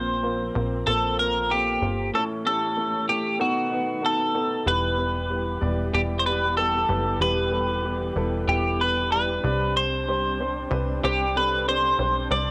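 This light-reverb home recording on cassette carries a tape tone on the guitar, piano and strings, framing a dramatic, driving piano-driven pop passage at 94 BPM that settles into E minor at 4.7 s. A clean, compressed twelve-string electric guitar carries the picked melody up front, while a natural-sounding baby grand with plate reverb plays the accompaniment and a dark, veiled string section, muted and bowed with vibrato, holds soft-attack chords in the background. Beneath them, a punchy, funky analog bass mixes sawtooth and pulse-wave tones into fast-attack, filter-plucked notes that decay, shaped by a moving notch.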